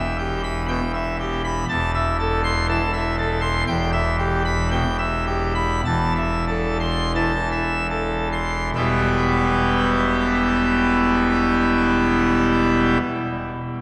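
Bathed in a long, wet cathedral reverb, a solo pipe organ on full registration with bright mixtures and crisp chiff sits up front for a dramatic, stormy classical toccata in E minor, its baroque voicing spanning from deep bass notes to high treble as it alternates between E minor and A minor over an E bass, slowing from 2.7 to 8.8 seconds before a new section begins, all cut from a longer piece.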